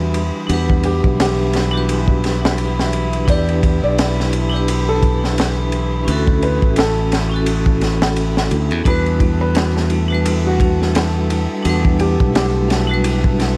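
Brooding and cinematic, this trip hop excerpt moves at 86 BPM with a swung 16th-note feel in E dorian, cycling through Em7, G6/B, Dmaj7 and back to Em7 over a small-room ambience dusted with vinyl crackle. A crunchy, saturated breakbeat kit with a punchy kick, high-tuned snare and dark ride sits up front beside a bright, growly fingered electric bass, while a hard-mallet vibraphone rings a metallic accompaniment through harmonic tremolo and tape echo, and a distant chamber string section floats soft-attack sustained chords with vintage 12-bit sampler grit. A felt-muted upright piano carries an intimate, mellow melody in the background with audible action noise and tape echo, and from 8.9 s a delicate, slightly out-of-tune music box adds very quiet, tinkling arpeggios.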